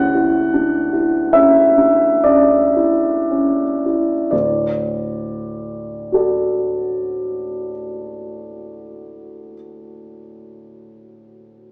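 In a slow, rubato 3/4 that moves between 26 and 40 BPM, this short impressionist solo piano passage eases and slows through its first 4.3 seconds before settling into a second phrase. The mood is hazy and luminous, rooted in D major with the tuning set at A4 = 441 Hz. A warm concert grand carries the whole piece from 0.0 to 11.7 seconds, ranging from D2 up to F#5, with a deep bass, an open character and long sustain that lets each tone ring. The harmony rests on a lush Dmaj9 at the start and resolves to a plain D chord at 4.3 seconds. The piano sits up front in a moderate recital hall reverb, though the overall sound has a small-speaker quality, and the fragment is cut from a longer piece.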